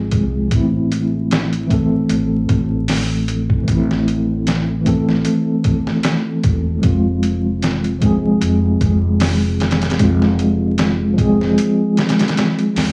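A dry, gritty recording dusted with vinyl crackle frames this dark, hypnotic trip hop excerpt, cut from a longer piece. A mellow tine electric piano sits up front as the accompaniment, its clean tone colored by tremolo, a low-pass filter and tape echo as it plays through built-in speakers. Beneath it, a pizzicato upright bass with steel strings gives a woody, bright acoustic low end, starting with the piano at 0.0 seconds. The sampler-style drum kit arrives at 0.1 seconds, pitched down, compressed and overdriven, with a thumpy kick, a medium-tuned snare and hi-hat set up front in a small room ambience, all with a light swing on the sixteenths. The harmony moves from Fm to Am and returns to Fm at 6.8 seconds.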